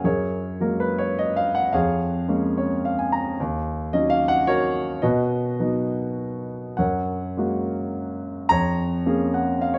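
A warm, natural-sounding grand piano plays alone up front in a sunny, lyrical classical passage in a flowing, rubato triple metre, spanning low bass to bright upper register as it moves through F#add9, A#m7/E#, D#m7 and B chords, with short fills at 2.3 and 9.1 seconds, all caught by close, detailed microphones with a light touch of reverb in this brief section cut from a longer piece.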